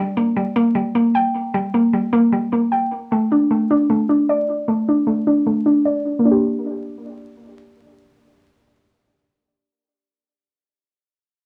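A woody, round mallet-like synth pluck plays up-front arpeggios through chorus, tape echo and a filter sweep over the first 6.2 seconds in this brooding, eerie half-time hip hop fragment, moving from Gm to D5 and back over cassette grit, vinyl crackle and a moderate studio reverb.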